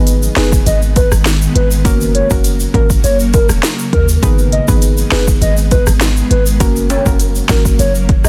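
This short dancehall excerpt opens on a deep, boomy 808-style bass and a soft, round pluck, joined almost at once by an overdriven afro-pop drum kit with a deep kick, sharp snare, smooth hats and rim clicks sitting up front. At a straight 101 BPM in G# minor, the mood is hypnotic and tough, with the harmony moving between G#m and F#. An ethereal, airy pad holds sustained chords beneath, its slow attack, tremolo and ensemble chorus set against sidechain pumping shared with the chorused pluck. From 0.4 seconds a hollow, woody clarinet-like synth lead carries the melody with vibrato, chorus and delay. A bright tube shaker and timbales sound distant, as if in a large room, while the dense, heavily limited mix otherwise stays dry. The pluck drops out at 7.7 seconds, leaving the other parts to finish the passage.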